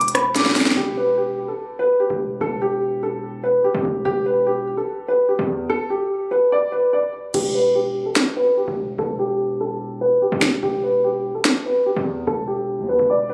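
Drill hip hop with an ominous, tense half-time feel, cut from a longer piece. A dark upright piano carries the melody throughout, sitting up front with a mellow, woody, vintage tone that a low-pass filter keeps smooth. Beneath it, a distorted 808-style bass plays the whole way, heavy and aggressive, with a noise layer over its sine core and saturated notes that hit with a fast attack and then decay. The electronic, produced drum kit opens with crash cymbal, crisp hi-hats, rim clicks and a sharp snare, closing a short fill at 0.8 seconds. It drops out, then returns at 7.3 seconds with the hi-hats muted and plays until 11.5 seconds, while a filter sweep moves across the piano. The sound comes from a phone in the room, with club reverb, light digital ambience and compression.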